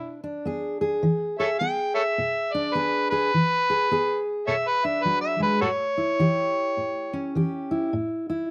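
A swung 4/4 groove at 104 BPM drives this rollicking, gritty acoustic country blues cut in E mixolydian, moving from E7 to A7 at 5.6 seconds. Up front, an amplified, overdriven harmonica takes a jazz-style solo full of tongue slaps and scooped notes until 7.3 seconds, while a full-bodied jumbo steel-string acoustic guitar fingerpicks the accompaniment through to 8.5 seconds. Both carry a slapback echo, and the dry outdoor recording gives the pair an intimate, close presence.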